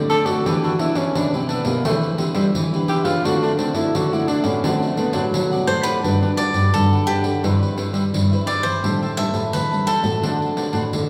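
A lively, joyful samba-choro groove in G major at 86 BPM opens with a bright, up-front picked cavaquinho accompaniment, a thumb-plucked nylon-string guitar playing chords and a second thumb-plucked nylon-string guitar carrying the bass, joined at once by a jingly, distant pandeiro. A breathy, mellow tenor saxophone with vibrato and a soft attack takes an up-front jazz solo over Em7, Cmaj9/E and D7 until 5.9 seconds. At 5.7 seconds a crisp, warm cavaquinho melody takes over across Gmaj7, Cmaj7/G, Am7 and D7, with the bass guitar adding a finger squeak beneath it in a reverberant recital hall.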